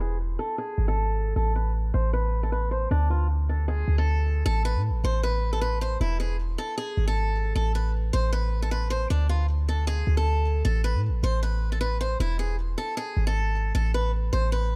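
A deep, boomy 808-style bass with a sine body, a noise layer and a fast, decaying attack sits up front through this hard-hitting, menacing trap excerpt at 155 BPM in a half-time 4/4 feel, in A harmonic minor. Above it, a bright, boxy picked acoustic guitar plays a swing-style melody through a low-pass filter and digital delay, with a filter sweep over the first 4.5 seconds, moving through Esus4, Amadd9 and D5 before settling on Asus2. The dark, warm production carries a small room ambience.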